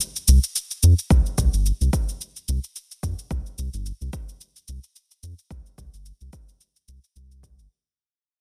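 Swung sixteenths at 109 BPM in 4/4 set a meditative, mystical organic downtempo groove, where a tape-tinged, softly clipped cabasa opens alone before a round, dark analog bass of sawtooth and sine with ring modulation enters at 0.3 seconds, sustained, evolving and pumping up front, and a deep, layered, overdriven electronic kick joins at 1.1 seconds, all in a dry, dense, heavily limited mix that fades out across this 7.7-second fragment of a longer piece.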